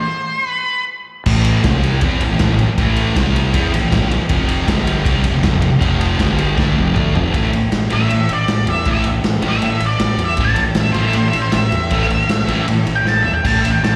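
An octave-fuzz lead guitar, picked and distorted with slapback echo and analog delay, flashes a brief phrase at the opening and returns at 7.9 seconds for a swaggering, menacing solo over an A minor garage rock stomp at 157 BPM in straight 4/4. From 1.3 seconds a thick, double-tracked fuzz guitar churns power-chord riffs through A5, C5, F5 and G5, anchored by a growly, overdriven fingered bass and a raw kit with a punchy kick, medium-tuned snare, crash, ride and toms, which adds fills at 6.6 and 13.1 seconds. This cut from a longer piece sounds like a live gig heard through the venue's PA, with small-room and recital-hall reverb.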